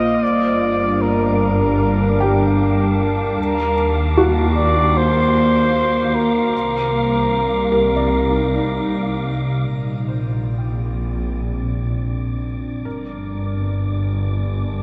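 A flugelhorn with light vibrato carries the melody, sounding distant and roomy yet up front, with shimmer reverb and delay, before it falls silent at 8.9 seconds. This is a luminous ambient piece at 76 BPM in 4/4 and Bb major, taken from a longer work. Beneath it, a warbly, detuned tape-like pad holds nostalgic lo-fi chords with chorus and shimmer, and a felt-muted upright piano plays soft, intimate arpeggios, its action noise audible through the shimmer and delay. A lush bowed double bass section anchors the low end with a focused ensemble tone, while a faint, breathy wind-like noise texture drifts high above. The harmony moves through Gm7, Ebmadd9 and Cm7 before settling on Bb and Gm. The second section begins at 9.7 seconds with a fade-in on the piano, and the whole mix sits in a vast, echoing cathedral-like space with a long, wet tail.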